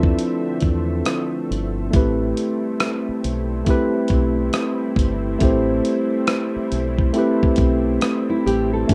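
A swung, laid-back groove of gritty, compressed sampler-style drums with a thumpy kick, rim clicks and hi-hat, re-recorded in a large room, sits up front beside a round, punchy dub bass in this hazy, melancholic lo-fi hip hop excerpt. A clean tine electric piano played through a combo amp carries the accompaniment with cassette-tape colour and a low-pass filter, while a lush, detuned sawtooth unison pad with chorus and a slow attack sustains the Dm9 to Am9 harmony softly underneath. At 8.3 seconds a full-bodied, fingerpicked nylon-string guitar enters with a brief second line near the close of this fragment of a longer piece, all wrapped in light reverb and a rough home-demo mix.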